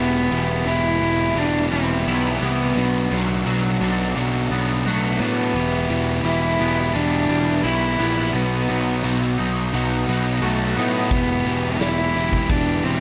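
Brooding and dark, this quiet-loud alternative rock excerpt in E minor moves at 86 BPM in a straight 4/4, its chords shifting from Em through Bm and B back to Em. A close, reedy cello with a gut-string tone carries the bowed melody with slapback echo, set over an up-front, bright overdriven guitar riff, a very quiet twangy clean guitar playing arpeggios, and a growly fuzz bass. A big rock drum kit with a punchy kick enters only at 11.1 seconds, all in light reverb and small room ambience.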